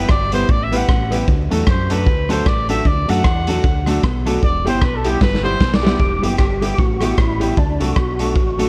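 A distant, roomy trumpet leads this mischievous, energetic ska excerpt in E minor at 153 BPM, carrying the melody through analog delay for the first 6.0 seconds. Beneath it sit a gritty, up-front garage drum kit, a round fingered bass, a woody upright piano playing delayed stabs and a clean electric guitar in the background. After a drum fill, a fat, percussive tonewheel organ with key click, overdrive, chorus vibrato and slow rotary speaker takes over the melody at 6.0 seconds, while the chords move between E minor and D under a studio reverb.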